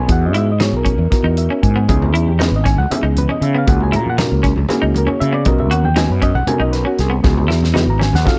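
In a straight-feel 7/8, this intense, funky slice of electric jazz fusion rides on a damped 70s drum kit of hi-hat, tight kick and fat snare, dry and up front with a rolled-off top. A growly fretless electric bass, direct and amped, holds the low end prominently. An overdriven reed electric piano, barky and gritty through a combo amp, carries the accompaniment and slips in a fill at 1.1 seconds, while a bright, twangy clean electric guitar adds picked, compressed stabs dressed in lush chorus. Low-tuned congas, ringing and saturated under soft hands, join in the background at 1.9 seconds. The harmony moves through rich chords from Emaj9 to C#m11, and a drum fill at 7.2 seconds closes the clip in a close, nearly reverb-free sound.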